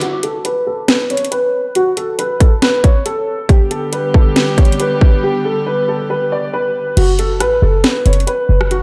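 A dreamy, reverb-soaked mix opens this brooding, melancholic half-time trap excerpt at 138 BPM in F# phrygian, with a filter sweep and a break before the bass arrives. A mellow, boxy grand piano carries the melody up front through analog chorus, low-pass filtering and tape echo, over an electronic kit of hard-clipped kick, sharp snare, metallic hats, rim clicks and crash. Soft-attack, sul tasto chamber strings with light vibrato hold dark chords from 3.5 s as the harmony moves to G, and a punchy, tight 808-style bass with a noise layer lands at 7.0 s on F# minor.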